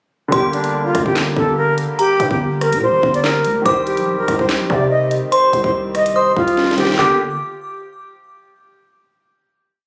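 Dark and cold, this short half-time drill piece in G minor at 144 BPM sets an airy, reedy concert flute loop up front over a tinkling synth tine bell counter-melody with chorus and delay, held open-voiced grand piano chords, a breathing harmonium pad, a growling 808-style bass with pitch slides following the kick, and a drill kit of hard-clipped kick, clap-layered snare, toms, rim clicks and skipping hi-hat rolls, with a drum fill at 6.6 seconds before a final G minor chord at 7.0 seconds, all captured on a phone in the room.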